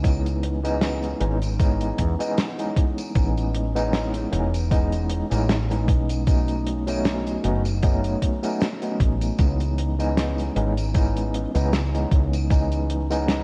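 Nostalgic and melancholic, this short vaporwave excerpt drifts along at 77 BPM in 4/4 with a light sixteenth-note swing, set in C# minor and tuned slightly sharp of standard pitch. An overdriven tine electric piano sits up front with a bright, barky, gritty tone through a combo amp, colored by fast tremolo, subtle chorus and tape echo as it carries the chords from C#m7 to Amaj9#11, then B7 and back to C#m7. Beneath it, a woody fretless electric bass plays round, dark and punchy, also placed up front. A damped 70s drum kit supplies dry hi-hat, a fat snare and tambourine with a rolled-off top, while an overdriven, thumpy electronic kick, re-recorded in a small room, drops out at 12.7 s just before the clip ends at 13.4 s. A lush hall reverb soaks the mix, and a cassette-tape haze gives the whole recording a dreamy, faded quality.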